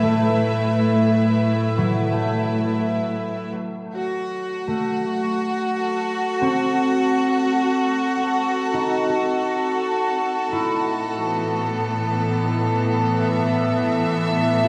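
In an unhurried, straight three-beat metre, this ambient fragment, cut from a longer piece, drifts with a weightless, luminous calm. A string section holds sustained chords across the full 14.7 seconds, its bowed ensemble sound clear and biting yet smooth at the top, with light vibrato and an intense, up-front presence. Alongside it, a thumb-plucked concert harp ringing with acoustic warmth spins arpeggios through a diffuse ambient delay and gradually fades out. The harmony moves from Asus2 to Gbm at 3.5 seconds and back to Asus2 at 10.5 seconds. A wet concert hall reverb and a dark, warm production give the sound an enveloping glow.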